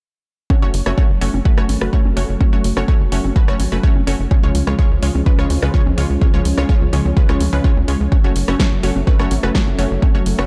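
A punchy, up-front electronic kick drives this expansive progressive house excerpt alongside a tight sawtooth sequencer bass and a bright, detuned unison pluck playing stabs with tape echo, while a soft-attack supersaw swell holds sustained chords in the background under a filter sweep, the bass, pluck and swell each pumping with sidechain, a pop drum kit adds hi-hat, rim click and a fat snare, very quiet congas sit underneath, and the dark production carries light reverb as the chords move from F#m to C# and back.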